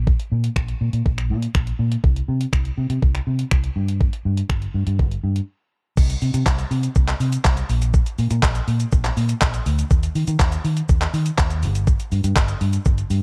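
A gated 80s digital drum machine sits up front with a thumpy kick, crash cymbal, hi-hat, shaker, finger snaps and handclaps, its gated reverb and tape-warm, sampler-style sound giving this confident, driving dance-pop excerpt in C minor its punch. Alongside it, also up front, a vintage muted fingered electric bass plays a round, foam-muted, amped line from G1 to Eb3, pumping through sidechain compression. The dark production keeps reverb minimal overall, and a brief break at 5.5 seconds leads into a new section at 6.0 seconds.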